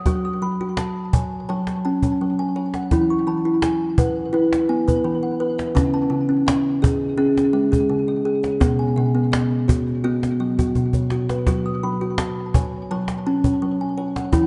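A dark, warm recording sits in a lush echo chamber with a long 2.2-second tail, its top end rolled off for a soft, enclosed glow. In this meditative, hypnotic world piece at 84 BPM in F# dorian, a hollow, ringing kalimba plays up-front thumb-plucked arpeggios spanning B2 to D#6 through a tape echo, moving through F#m, E, C#m and B before returning to F#m. Alongside it, an acoustic cajon played by soft hands adds a woody pulse with faint snares and a brief fill at 10.8 seconds, in a passage cut from a longer piece.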